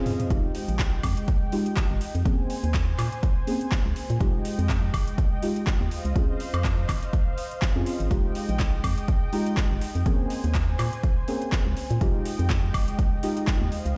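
A swung 123 BPM pulse in F minor drives this warm, deep house cut, where a punchy, up-front analog kick and an overdriven drum kit of handclaps, metallic hi-hats, toms and woodblock (opening with a brief fill) sit under a dark, hollow, organ-like FM bass, while soft, warbling vintage chord stabs with analog delay and a smooth, detuned sawtooth pad, both chorused and pumping with sidechain, move through Fm9, Bbm9 and Dbmaj7 in a big, bare stone-room sound.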